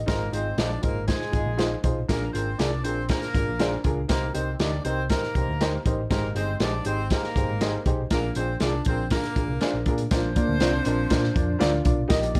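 A crunchy breakbeat kit drives this uptempo 1960s-style soul clip in a straight 4/4. Its tight kick, medium-tuned snare and hi-hat sit up front with a saturated, gritty edge and a rolled-off top. Beneath it, a picked hollow-body short-scale bass gives a round, punchy, amped low end, while a worn upright piano, woody and slightly detuned with audible action noise, fills out the accompaniment. A clear horn section with vibrato carries the second line, and an electric guitar through a small old amp adds slightly broken-up, lo-fi stabs in the background from 0.6 seconds, with the horns, piano and that guitar bathed in plate reverb. The chords move through Ab6, Bb7, Cm7 and Abmaj7 before landing on Bbadd9 at 10.1 seconds, and a mellow, clean, fingered electric guitar riff slips in at 10.4 seconds. Lightly reverberant with a dark, warm production, this joyful passage is cut from a longer piece.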